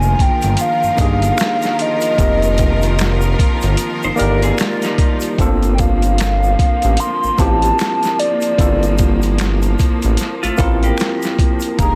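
A dry, close-sounding mix with a dense, heavily limited modern master opens this sultry, late-night neo-soul and R&B excerpt, cut from a longer piece and moving at 75 BPM in 4/4 with a swung sixteenth-note feel. A gritty, pitched-down boom bap drum kit enters at 0.2 seconds, its thumpy kick, medium-tuned snare and hi-hat sitting up front beside a smooth sawtooth-and-square synth bass with a detuned, moving notch. Over them, a hollow, woody clarinet-like synth lead carries the melody with vibrato and chorus, while a worn, slightly out-of-tune tine electric piano adds lightly overdriven accompaniment, as if heard through built-in speakers. A focused, bowed studio string section holds lush sustained chords beneath, and an egg shaker with finger snaps and group handclaps stays in the background. A dark, picked clean electric guitar with lush chorus slips in for a second line from 4.0 to 5.4 seconds and again from 10.4 to 11.8 seconds, as the harmony shifts from Fm11 to Gm11 at 5.4 seconds.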